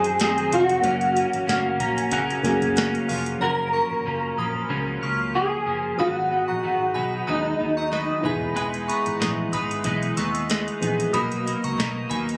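A slightly broken-up, twangy lead guitar carries the melody over mellow, detuned electric-piano-like synth keys, a bright, clean-picked twelve-string electric guitar, a dark, foam-muted bass and a soft vintage rhythm box, opening this sunny, laid-back bedroom-pop excerpt with a gentle swing. At 3.4 seconds the rhythm box drops out and a crystalline FM synth bell enters with a second line through phaser and tape echo. The drums return with a fill at 7.9 seconds before the lead guitar stops at 8.2, all captured with a phone-in-the-room, small-club intimacy.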